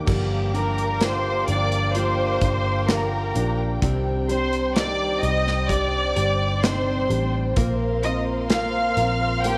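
A melancholic pop ballad in G minor at 64 BPM opens on woody upright piano, dark bowed string chords, full-bodied picked acoustic guitar arpeggios and a round, punchy muted electric bass; a polished, airy drum kit joins at 0.1 s, and at 0.6 s a lush, up-front violin section carries a smooth vibrato melody over Gm7, Cmadd9 and Bbsus2 in a moderate echo-chamber reverb.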